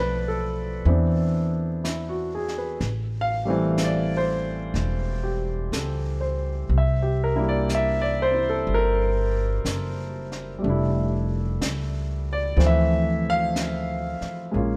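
A dark, softly reverberant production opens this short jazz excerpt, a romantic, late-night ballad at a slow 61 BPM in 4/4 with a swung eighth-note feel. A grand piano sits up front with a natural, warm tone, playing accompaniment chords that move from Bm7b5 through Am7 and C9 to Fmaj13 and Dm9. Beneath it, a pizzicato upright bass with steel strings gives a woody, thumpy low end, also close and present from the first moment. At 0.9 seconds a brushed drum kit joins, its high-tuned snare and hi-hat heard at a discreet level in a small, natural-sounding room. The three players carry on together until the fragment ends at 14.8 seconds, cut from a longer piece.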